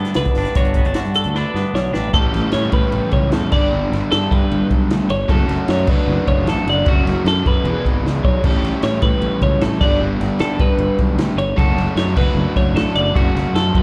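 Playful yet wistful, this fragment of a math rock and midwest emo piece opens with a compressed twelve-string electric guitar playing bright arpeggios with spring reverb over a dark, fuzzy fingered bass and a compact cocktail kit with a high-tuned snare and punchy kick, while a clean, twangy electric guitar adds accompaniment until 3.5 seconds. A drum fill leads to 2.1 seconds, where a double-tracked, overdriven electric guitar enters with a riff coloured by slapback echo, as the chords move from Gmaj9 through A7, F#m and E7. It sounds like a live club gig heard through the venue's PA, with roomy reverb around the band.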